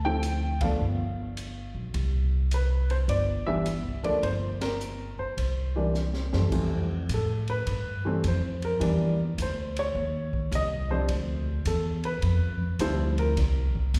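Swinging at 105 BPM in 4/4 with a firm triplet lilt, this sophisticated jazz piano trio moves from C major into F major at 6.5 s, where the baby grand takes a solo that runs to the end. The intimate piano, with audible action noise, short sustain and a slapback echo, sits up front beside a woody pizzicato upright bass on steel strings. An open acoustic drum kit with dark cymbals, a high-tuned snare and a boomy kick joins the full band in accents at 0.5 and 4.5 s and adds a fill just before the solo. It sounds like a live gig heard through the venue's PA, with light recital hall reverb.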